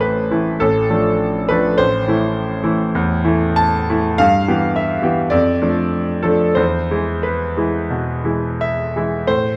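A brilliant concert grand piano carries this romantic classical character piece by itself, its tone natural and up front, with a deep bass anchoring a range that spans A1 to A5. The mood is passionate yet bittersweet, and the 4/4 pulse moves freely with rubato, drifting between 79 and 108 BPM. Over its 9.6 seconds, the harmony settles in A minor, passes through Dm/A, returns to Am, then moves through Em/G and Dm/F before landing on an unresolved E chord at 6.6 seconds. Close, detailed microphones capture the instrument, framed by a moderate recital hall reverb with a 1.5-second decay. The passage is cut from a longer piece, so it breaks off on that final chord.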